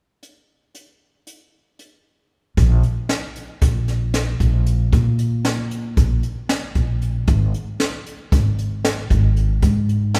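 Brooding and tense, this progressive instrumental excerpt moves in an uneven 9/8 at 230 BPM in eighths, opening with an up-front jazz drum kit played with brushes, its high-tuned snare and boomy kick sitting beside the hi-hat. At 2.6 seconds a woody, dark pizzicato upright bass with steel strings enters up front, ranging from Ab1 to Bb2 through to the end at 10.2 seconds. A moderate concert hall reverb with a 2.4-second tail surrounds the pair.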